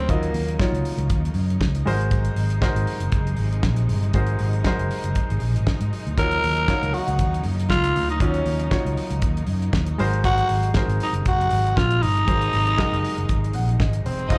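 Disco at 118 BPM, glamorous and driving, cut from a longer piece, heard as a live gig through a club's PA with light reverb: a raspy, growling tenor saxophone with slapback echo carries the melody up front, sounding briefly at the start and returning at 6.2 seconds, over polished grand piano accompaniment with the same echo, a lush string section in the background, a punchy fingered electric bass, and a damped 70s drum kit with a fat snare and tight kick, moving between Ebm7 and Ab7 until a piano fill at 13.3 seconds and a smooth violin section entering at 14.3 seconds.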